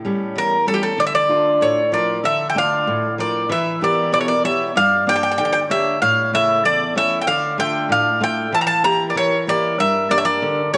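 Bittersweet and brooding, this short cut from a longer Greek folk piece for bouzouki band moves at 96 BPM in a straight 2/4 in D harmonic minor, as picked steel-string acoustic guitar with audible finger squeak sets the accompaniment from the start, the bright, metallic double-strung bouzouki carries the melody up front from 0.4 seconds, and a reedy, band-limited vintage accordion adds a mellow second line from 1.6 seconds, all bathed in a wet echo-chamber reverb over chords that pass from A7 and Dm through Em, Gm, Edim and back to Gm.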